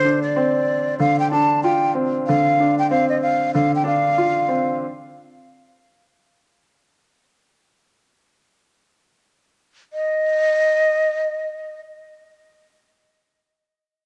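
A breathy, hollow jazz flute carries the melody up front, its soft attack, lifted highs and vibrato floating over a dark, mellow grand piano with short sustain and a cassette-tape tint, both resting on a Dm7 chord until 4.8 seconds. The flute then returns alone at 9.9 seconds for a brief phrase. This moody, reflective hip hop excerpt moves at 94 BPM with a swung 16th-note feel, set in a small room with a moderate echo-chamber reverb and a warm production.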